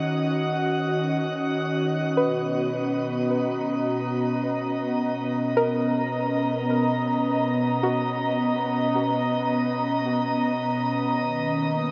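A wet, shimmering reverb haze with a mellow top end frames this peaceful, weightless ambient excerpt in B major at 53 BPM, where an airy, breathy pad sits up front holding sustained chorused chords from D#m7 into Bmaj7 and on to D#7(no3), a barely audible reedy harmonium drone breathes beneath it until 2.3 seconds, a glassy texture of drifting overtones, present from the start, swells gradually from 2.2 seconds, and a soft, round, dark pluck traces tape-echoed arpeggios in the background from 2.2 to 9.8 seconds, gradually receding as the pad's filter sweeps.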